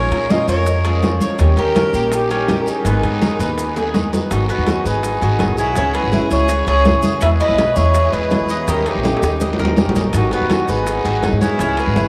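A straight 4/4 groove at 165 BPM drives this danceable Cuban son and guajira excerpt in G# minor, where a veiled, forceful bucket-muted trumpet carries the melody over a clear, bowed fiddle second line, bright, metallic Cuban tres arpeggios, fingerpicked flamenco guitar with finger squeak in the background, and a woody, dark pizzicato upright bass up front, while ringing congas, raspy guiro, grainy maracas, very quiet metal-shell timbales and round, low-tuned bongos fill out the percussion, with drum fills at 3.8 and 9.0 seconds and the whole mix set in a huge, wet reverb that evokes a vast, echoing space.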